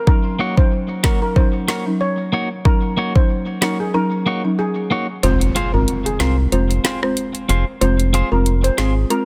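Dancehall excerpt with a hypnotic, sultry swing, where a shimmering steel pan melody with tape echo floats over woody folk marimba, twangy clean electric guitar arpeggios also touched by tape echo, and an up-front afro-pop drum kit with a deep kick and dark hats, until at 5.2 seconds the kick drops out as a round analog bass enters alongside a background electronic impact, all in a dry, dense, heavily limited modern mix.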